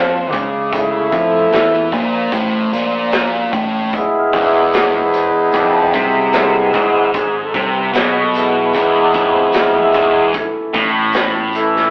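Psychedelic rock with a dark, mysterious air, this short cut from a longer piece features a reedy, nasal hand-pumped harmonium up front, holding sustained chords as a solo over a double-tracked fuzz guitar riff colored by distortion and phaser, while a fingered electric bass sits in the background. A crunchy breakbeat drum kit with a tight kick and a gritty, rolled-off top enters at 0.3 seconds, and a very quiet, jingly tambourine joins at 3.9 seconds as the chords move from A5 to E and back to A5 at 10.3 seconds. The whole take has a rough rehearsal-room feel, with moderate stone-room reverb, saturation and a telephone-like tone.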